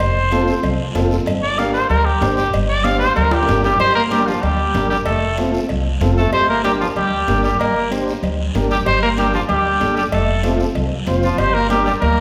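A wet recital-hall reverb fills this excerpt, lending the fast, straight-feel cumbia in G minor at 190 BPM a church-like bloom while keeping its danceable, passionate drive. The trumpet leads up front with a punchy, vintage tone, light vibrato and a pop-style phrasing, playing solo for the opening 3.8 seconds before a drum fill at 3.3 seconds ushers in the next section. A bright clarinet joins at 3.6 seconds as a forceful, jazz-style second line with its own light vibrato. Underneath, a pizzicato upright bass sits up front with a woody, steel-string sound, while a clean, mellow combo organ with heavy vibrato fills in the accompaniment. In the background, high-tuned congas with a thin-skinned, band-limited snap and a ringing metal-shell cowbell and timbales keep the groove moving. A raspy guiro sits close and dry, and everything plays over a harmony that alternates between F and Gm.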